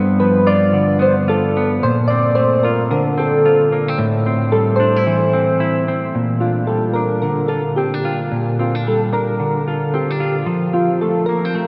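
A relaxed 111 BPM groove in 4/4 with swung sixteenths carries this laid-back, dreamy indie pop excerpt, cut from a longer piece, as it moves from G7 through Bbmaj9 and Am7 before settling on Bb6 and finally F. A clean, hollow-body semi-hollow electric guitar plays the accompaniment up front, its compressed, fingered tone coloured by lush chorus and vibrato, while soft electric-piano-like synth keys enter at 0.2 seconds with a round, dark, sine-like melody treated with phaser, subtle chorus and analog delay. A vast cathedral reverb soaks the whole mix, giving it a hazy, floating atmosphere.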